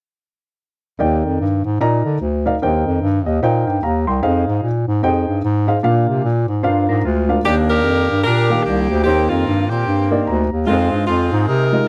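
A swung 4/4 groove at 149 BPM drives this uptempo gospel passage in Eb major, reverent and uplifting, with a woody, intimate upright piano (its action noise audible) comping from the start and dropping in fills, while a mellow, soft-attacked bass clarinet carries the low line up front. A clean, fingered electric guitar with analog chorus slips in briefly at 6.6 seconds, and then a clear, close-miked saxophone section with light vibrato takes the melody from 7.5 seconds over a repeating Ebmaj7, Cm7/Eb, Fm7 progression. The sound is dry and close, in the manner of a 1970s studio, and the passage is cut from a longer piece.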